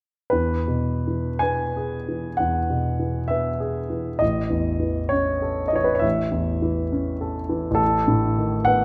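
Closely miked and detailed in a moderate recital hall reverb, this brief romantic nocturne cut from a longer piece features a warm, up-front grand piano alone from 0.3 to 8.8 seconds, ranging from A1 to G#5 in E major at a rubato 52-70 BPM in 4/4, moving from E to A at 4.2 seconds and B7/A at 7.8 seconds with a nostalgic, serene mood.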